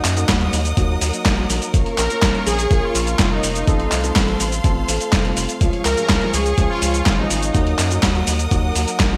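Opening on a bold, fat analog synth brass melody with chorus and digital delay over lush symphonic strings, dark boxy grand piano stabs, a round, deep analog bass and a gritty, overdriven sampler-style soul kit of snare, hi-hat, handclaps and cabasa treated with gated reverb, joined at 0.3 seconds by a thumpy overdriven electronic kick, this nostalgic, melodramatic italo disco fragment moves at 124 BPM through Ebm, Bbm, F/A and Db with bright 1980s-style digital sheen.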